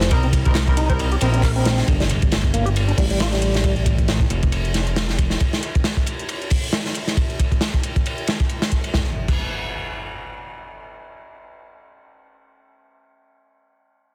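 Breakbeat excerpt at 136 BPM in G minor with a 16th-note swing, energetic and gritty, opening on a drop where a saturated, dark-cymballed acoustic breakbeat kit sits up front over a fat sawtooth analog bass with tube saturation and a filter sweep, a lightly overdriven tonewheel organ riff through fast rotary speaker, low-pass filter and tape echo, a background garage kit of layered handclaps, hi-hats and ride, and distant, roomy horn stabs with light vibrato over Cm7, before a background impact hits at 1.9 seconds as the harmony moves to G7sus2, the bass drops out at 5.4 seconds and a final impact carries on alone after the drums stop at 9.4 seconds in a dense, heavily limited modern master.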